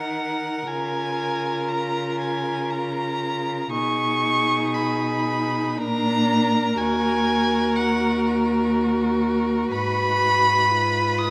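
This classical excerpt is a slow romantic movement for string quartet, melancholic and elegiac in mood, moving at 60 BPM in 3/4 with a rubato feel in Eb minor. The first violin carries the melody high in its range, its bowed tone rich and focused with vibrato, sitting up front in the mix. The second violin plays a lower supporting line with a warm, focused tone and vibrato, while the viola fills the accompaniment with a dark, expressive voice marked by portamento. The cello anchors the bass with a rich, focused bowed sound and vibrato, also placed up front alongside the lead violin. Across the 11.3 seconds the harmony moves from Eb minor through Bb minor and Ab minor to a Bb chord at 5.8 seconds, returning to Eb minor before closing on a diminished chord at 9.7 seconds. A reverberant recital hall surrounds the four single players, and the passage is cut from a longer piece.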